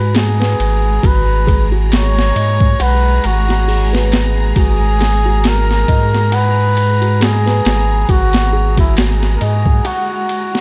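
A cup-muted trumpet carries the melody in this brooding, smoky trip hop excerpt in G# minor at 68 BPM, its veiled, breathy tone close-miked and trailed by tape echo over a single G#m7 chord. Beneath it, a lush bowed string section holds sustained chords, a felt-muted upright piano with a boxy, dark sound plays arpeggios through digital delay, and a round sine sub bass sits up front until 9.8 s. A gritty, pitched-down boom bap kit with an overdriven, thumpy kick, high-tuned snare, hi-hat and ride drives a swung 16th-note feel under light reverb, before a short break from 9.9 s.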